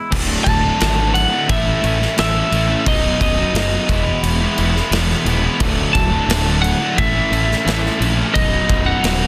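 A dense, heavily limited modern master with little reverb presents this short cut from a longer quiet-loud alternative rock piece, cathartic and restless at a straight 88 BPM in 4/4. A bright, cranked stack guitar with overdrive and a crunchy, overdriven second guitar sitting in the background pick the riff together over chords moving from D to A, B and E, then back through D, A and B. Underneath, a dark, round fingered electric bass with fuzz and overdrive holds the low end, while a punchy, up-front acoustic kit, recorded in a studio room with a medium-tuned snare, drives the beat with kick, snare and crash cymbal. From 0.4 s a lightly driven lead guitar, slightly broken-up and compressed with a warm tone and slapback echo, carries the melody high above the riff. The whole passage runs as one section until the cut at 9.3 s.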